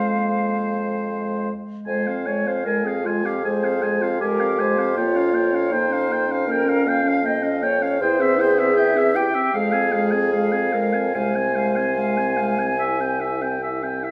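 Rubato and unevenly placed beats give this slow, romantic wind-quintet fragment a yearning, elegiac sway, as the airy, vibrato-laced flute carries the melody over a clear, distant-sounding oboe second line. A mellow clarinet and a dark, soft-edged French horn fill the accompaniment, while a present bassoon with light vibrato anchors the bass. The wet recital-hall reverb lends a roomy glow as the minor-key harmony settles onto a C chord near 12.8 seconds before the passage breaks off at about 14 seconds.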